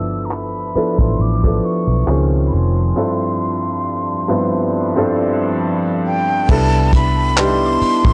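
A slow 68 BPM groove in 4/4 with a light sixteenth-note swing sets this smooth, romantic contemporary R&B excerpt in motion, the dry soul drum kit entering at 0.3 s with a punchy kick, handclaps, hi-hat and dark crash cymbal under a rolled-off top. Underneath, a vintage foam-muted fingered electric bass sits up front with a round, amped tone, while a clear grand piano plays intimate accompaniment with its action noise audible. A breathy, mellow silver concert flute carries the melody high above with vibrato, its unsteady, tongued notes trailed by analog delay. A deep, moody ambient pad holds sustained chords in the background with chorus, reverb and sidechain pumping, and a very quiet, woody, mallet-like synth pluck adds a percussive texture. The harmony moves through G13, Dbmaj9 and G13sus4 under a filter sweep until 6.5 s, when a new section lands on Cmaj13, all heard through a gritty cassette-tape sound in a small room.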